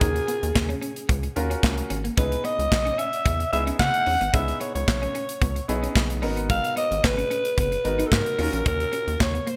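A breathy, raspy alto saxophone with delay carries the melody up front in this funky, danceable early-eighties boogie funk excerpt at 111 BPM in C# dorian, over a rubbery square-wave bass, a punchy modern studio drum kit with handclaps, hi-hat and snare, a natural-toned baby grand piano comping on minor ninth chords, and a twangy, clean electric guitar riff with ensemble chorus sitting in the background, all framed by bright 1980s-style digital production and plate reverb.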